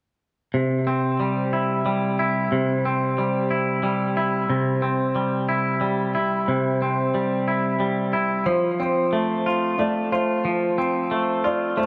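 Euphoric and cinematic, this rock excerpt in 6/8 at 60 BPM in C major opens at 0.5 seconds with a twangy, clean, up-front electric guitar playing arpeggios through digital delay over a C chord, and at 8.5 seconds, as the harmony moves to F, a soft felt-muted upright piano with audible action noise joins with its own delayed arpeggios, the two heard within a wet scoring-stage reverb.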